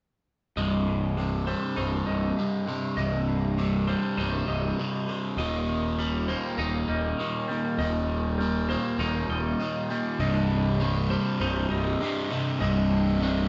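Cathartic and brooding, this post-rock excerpt is a build-up in a straight four, cut from a longer piece and moving from Cm to Eb and back. From 0.6 seconds a clean, twangy electric guitar and a bright twelve-string electric guitar with spring reverb play arpeggios above an up-front overdriven guitar riff with phaser and a growly, punchy fuzz bass. At 10.2 seconds a distorted fuzz guitar riff joins in the background, all played live in a stone room whose wet reverb gives the sound a dark, rounded top.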